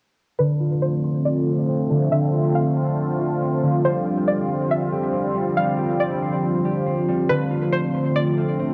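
An evolving, detuned sawtooth pad sits up front in this spacious, melancholic half-time hip hop excerpt, holding sustained chords that move from Dm7 to G7sus4 and back to Dm7 as a filter sweep runs through the whole passage. A twangy, string-like resonator pluck carries the melody with chorus and tape echo, while a fingerpicked concert harp rings out arpeggios through a low-pass filter and its own tape echo. All three parts play together from 0.4 to 8.7 seconds, set in a moderate spring reverb with studio ambience and the soft haze of a home cassette recording.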